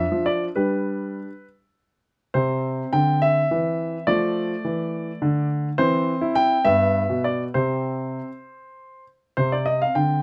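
A smooth, vintage-toned grand piano sits up front in a light reverb, giving this brief passage from a longer work an intimate, close sound. It is a classical-period piano sonatina in a lilting 6/8, played solo with a rubato that lets the phrases breathe. The mood is cheerful and graceful, and the piano ranges from G2 up to G5 across its ten seconds. The harmony moves through Dm/F, G, C and Dm before settling on a C5 chord at 7.5 seconds. A turn to C minor at 9.4 seconds closes the passage with a touch of shadow.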